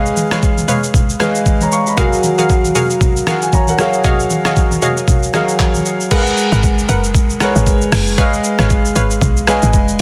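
A dry, dense and heavily limited mix carries this deep, late-night amapiano excerpt at 116 BPM in G# dorian with a swung 16th-note feel, where a dark, boxy grand piano with audible action noise sits up front beside a gritty, pitched-down sampler-style drum kit of thumpy kick, handclaps, hi-hat, rim click, shaker, crash cymbal and soft-clipped snare, while a hollow, detuned square-wave pluck plays chorused, delayed stabs and low-tuned, thin-skinned congas sound until 5.8 seconds, before the drop at 6.1 seconds brings in a woody, punchy FM log drum bass at 6.5 seconds.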